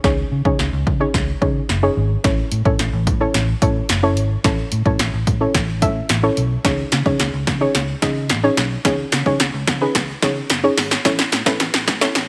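A punchy analog drum machine drives this confident, bittersweet dance-pop cut at 109 BPM in a straight 4/4, its kick, snare and hi-hat sitting up front with the sound of a small room, and a drum fill and build-up run throughout its 12.3 seconds. Beneath it, a dark, foam-muted vintage fingered electric bass pumps against the sidechain. A soft, round pluck with a fast attack, short decay and chorus traces the C#sus2 and A chords in C# minor, all set in light digital ambience with a filter sweep shaping the mix.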